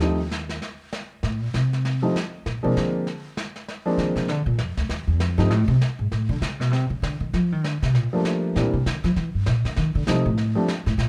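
A relaxed, sophisticated jazz piano trio swings at 197 BPM in 4/4, set in F mixolydian and cut from a longer piece. The upright bass takes a solo through the whole 11.1 seconds, its pizzicato steel strings sounding woody and growly, placed up front in the mix. An intimate concert grand piano carries the melody in its middle register with deep bass and audible action noise, playing from the start to 5.5 seconds and returning at 8.1 seconds. Brushes on a medium-tuned snare give a smooth, dark pulse with a rolled-off top, sitting low behind the bass. The harmony moves from chordless stretches through Am, Bb7 and F7 to D5, then a Gm7 to C7 turn that lands back on F7. Light reverb and a faint mains hum round out the warm production.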